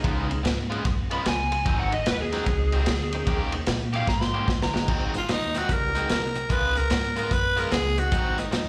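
Heard through a club's PA with small-room reverb, this rollicking, swaggering electric blues shuffle at 149 BPM in Ab mixolydian opens with an overdriven slide guitar solo played with fingerpicks over a biting, picked guitar riff, woody gut-string upright bass, a crunchy, saturated breakbeat kit with a punchy kick, and a percussive tonewheel organ with slow rotary speaker tucked in the background, before a drum fill at 4.1 seconds and a raspy, growling tenor saxophone melody entering up front at 5.2 seconds.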